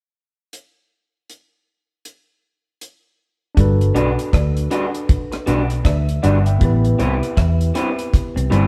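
A round, punchy, foam-muted electric bass sits up front in this sweet, romantic lovers rock reggae excerpt at 79 BPM in G major, joining at 3.6 seconds a dry, tight-kicked drum kit of hi-hat, kick and rim click that plays alone from 0.5 seconds until a worn, slightly out-of-tune tine electric piano with dub echo enters at 3.5 seconds. Alongside them come a slightly broken-up guitar riff and twangy guitar stabs in the background, all moving from Gmaj7 to Am9 as a band playing live in a stone room.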